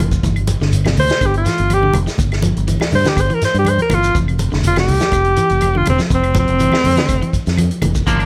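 Afrobeat with a defiant, intense mood, cut from a longer piece, where a bright, forceful alto saxophone with vibrato and plate reverb takes an up-front solo from 1.0 s over a round, dark fingered electric bass, a vintage drum kit with a punchy kick and rolled-off top, background congas with hard hands, grainy shekere, woody claves and a slightly broken-up electric guitar playing arpeggios through spring reverb, before a second, twangy electric guitar jabs in with stabs at 8.1 s, all in a light reverb.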